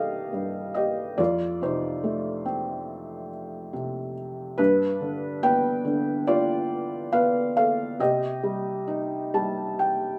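A felt-muted upright piano, soft and intimate and placed up front, carries this melancholic, dark classical fragment on its own, played with lyrical rubato across a range from C2 to A5 and tuned slightly low to A4 = 435 Hz. Its harmony moves from Cm7 through F and G7 before settling on Cm, and a brief piano fill arrives at 8.9 seconds. Light reverb gives the mellow tone a little air in this short section cut from a longer piece.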